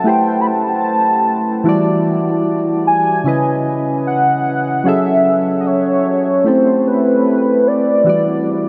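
A velvety synth lead carries the melody from the opening, its detuned sawtooth voices thickened by chorus, vibrato and an analog delay, sitting up front in a mellow upper register. Beneath it, soft electric-piano-like synth keys lay down round, dark chords with a fast attack that decays away, colored by their own chorus and a filter sweep. This is a late-night, sensual R&B clip, cut from a longer piece, in an unhurried 4/4 with a light swing on the sixteenths. The harmony moves through lush minor ninth chords, Am9 to Em9 at first, then shifts at 3.3 seconds into a second passage of C#m9 and F#m9 before circling back to Am9 and Em9. The whole mix is soaked in a huge ambient reverb with a seven-second tail, giving the short 8.7-second fragment a dreamy, floating haze.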